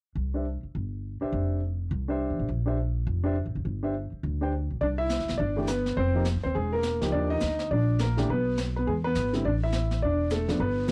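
The warm baby grand piano carries the melody up front, its natural tone and short sustain lending a playful, sophisticated air to this swinging jazz piano trio excerpt in C major at 207 BPM. The upright bass enters at 0.2 seconds, just before the piano, and its pizzicato steel strings sound woody, bright and thumpy, sitting up front beside the keys. At 4.8 seconds the jazz brush drum kit joins, with brushes on a medium-tuned snare and hi-hat giving an airy, polished small-room texture. The harmony moves through chords such as Fmaj7(no3), Cmaj9, F7(no3) and Ebadd9 before a brief chordless moment and a close on Asus4. The piano and drums carry a cassette tape character, and light reverb frames this home recording on cassette, cut from a longer piece.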